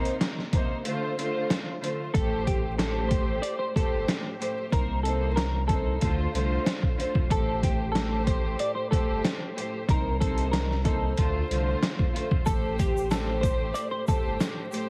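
A heavily compressed, radio-like sound with vinyl crackle frames this reflective, dark boom-bap hip-hop excerpt in A minor, moving at 93 BPM with a light swing on the sixteenths. Lush, woody bowed strings with vibrato open the cut up front, treated with cassette tape color and filtering, while a gritty, pitched-down sampler-style drum kit brings a thumpy kick, a medium-tuned snare and hi-hat, its kick dropping out briefly before the main groove arrives at 2.1 seconds. There, a dark, clean hollow-body electric guitar takes the melody with analog chorus, delay and filtering, and a deep, round, soft dub sub bass settles underneath. The harmony cycles through Cm7, Dm7 and Am7, giving the loop a brooding, unresolved pull. Near the end, at 12.5 seconds, a grainy, bright tube shaker appears faintly in the background, sounding distant, as if in a large room.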